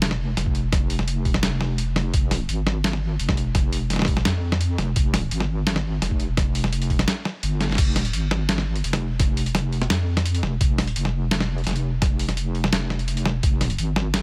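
A dry cut from a longer half-time drum and bass track, dark and tense, built around a deep soft wobble bass that sits up front, saturated and compressed with a chorus effect and a square-and-sine tone. A gritty, pitched-down boom bap sampler-style kit with a medium-tuned snare, hi-hat and crash cymbal also sits forward with a tape-warm, small-room character, joined at 0.5 seconds by a thumpy, compressed electronic kick. The drop runs twice, linked by a drum fill at 7.6 seconds.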